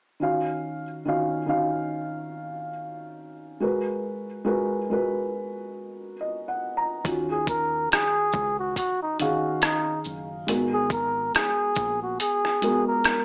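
Swung sixteenths in 4/4 carry this melancholic, nostalgic lo-fi hip hop excerpt, which opens on a soft, boxy felt-muted upright piano playing minor ninth chords alone, with a brief piano fill at 5.8 seconds. At 7.0 seconds a compressed, pitched-down sampler-style drum kit arrives with a thumpy kick, rim click, hi-hat and shaker, joined by a round, dark dub electric bass. A breathy flugelhorn with light vibrato takes the jazz-style lead from 7.3 seconds, all heard through a cassette-tape, small-speaker haze and a short, wet reverb.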